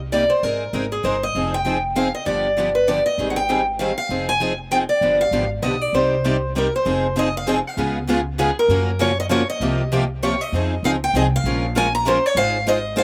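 A dark, woody upright bass opens this excerpt from a longer acoustic string swing piece in the jazz manouche style, plucked on gut strings with a thumpy low end. Three picked steel-string acoustic guitars, each with a bright, boxy parlour tone, join almost at once at a brisk 196 BPM in 3/4 with a swung eighth-note feel. The lead guitar sits up front with a slapback echo, carrying a virtuosic, bittersweet melody. The two accompanying guitars hold down the harmony: one on fresh strings with audible finger squeak, the other on fresh strings set further back in the background. The music begins in C minor over chords such as Abadd9, Fm7 and G7, then moves to F minor at 6.9 seconds, passing through Db7, Gbmaj7 and C7sus4. The sound is dry and open, recorded outdoors with little reverb.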